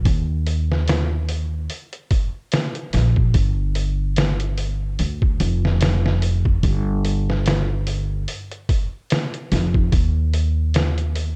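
A woody, pizzicato upright bass opens this short trip hop excerpt, its gut strings sitting up front and moving through the low register from the very start at 0.0 seconds. A sampler-style drum kit joins at 0.1 seconds with a thumpy kick, a medium-tuned snare and hi-hat, all pitched down, compressed and muffled, carrying vintage 12-bit grit and studio reverb. The drums also sit up front, sharing the foreground with the bass as both play on together to the end. The groove has a lazy swing in a steady four, and the mood is cinematic and melancholic. A dark, warm production casts a digital ambience over the whole passage, which is cut from a longer piece.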